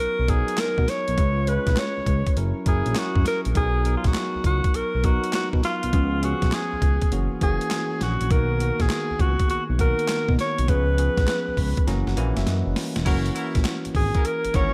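A clear, up-front alto saxophone with vibrato, scooped notes and a diffuse ambient delay opens this bouncy, upbeat swung new jack swing R&B excerpt over a bell-like tine electric piano and a dark, smooth sawtooth synth bass, joined at 0.3 seconds by a gritty, pitched-down boom bap sampler-style kit with a thumpy kick, high-tuned snare, handclaps, hi-hat and crash; after electric piano and drum fills, distant, warm horn section stabs with their own delay arrive at 13.1 seconds, all set in a light digital reverb.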